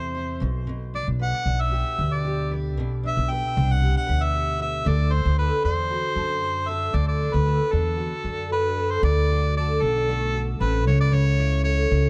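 A mellow, up-front harmonica leads this easy-going, sunny acoustic pop excerpt at 115 BPM, its punchy, scooped notes carrying a light vibrato and a digital delay. It rides over a dark, full-bodied, double-tracked steel-string guitar with audible finger squeak and a woody, thumpy pizzicato upright bass sitting prominently underneath. The dry, dusky production moves from G/B to D, then shifts into a new passage at 9.0 seconds over D7 and A/C#.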